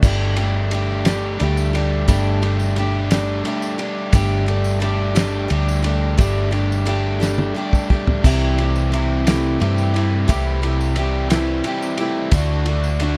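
A dry, dark-toned folk rock and heartland rock excerpt in a hopeful, nostalgic 6/8 at 59 BPM, where a bright, boxy picked parlour acoustic guitar plays accompaniment beside a double-tracked overdriven electric guitar riff, a round, up-front hollow-body short-scale bass, a damped 70s drum kit with a fat snare, tight kick and dark cymbals that plays a fill from 7.2 to 8.2 seconds, and a jingly tambourine in the background, over chords moving from Gsus2 to C6 to D.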